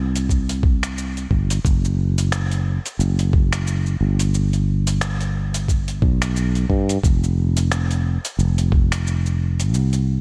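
A loosely swung 89 BPM groove in 4/4 opens this blissful sunset chillout excerpt, where a gritty, thumpy electronic kick sits up front beside a softer, tape-warm sampler-style kit of cabasa, finger snaps and hi-hat dressed in studio reverb, while a bright, growly sustaining fretless electric bass, direct and amped, holds the low end from F1 to G2 across the full 10.2 seconds.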